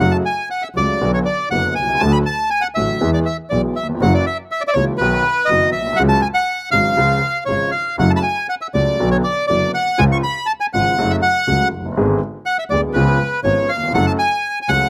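Rubato phrasing stretches a 4/4 pulse around 120 BPM in this sultry, dramatic tango excerpt in F# minor, tuned slightly low with A4 at 436 Hz. A reedy, bright bandoneon sits up front carrying the melody from B4 to C#6, while a concert grand piano supplies accompaniment in a clear, intimate voice with deep bass, long sustain and audible action noise, touched by a slapback echo. Beneath them, a single bowed double bass plays the bass line between F#1 and E2 with a biting, intense tone, light vibrato and a smooth top. All three parts play together for the full 14.9 seconds, moving through a minor-key progression that passes through F#7, C#sus4, G#dim and C#7 before settling back on F#m at 13.9 seconds. The recording was made outdoors with little reverb, giving the trio a dry, immediate presence.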